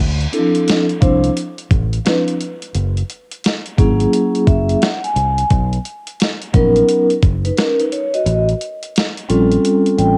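Hip hop in a jazz-hop vein, mellow and smoky at 87 BPM with a swung 16th-note feel, where a gritty, overdriven sampler-style drum kit with a thumpy kick and cassette-tape grit sits up front beside a bright, punchy fretless electric bass touched with subtle chorus, while a soft-mallet vibraphone rings out airy and metallic over Dm9, F#7, Bmaj9 and A7alt, adding fills at 4.1 s and 9.6 s as the kick drops out from 8.3 s, the whole home cassette recording sitting in a moderate spring reverb.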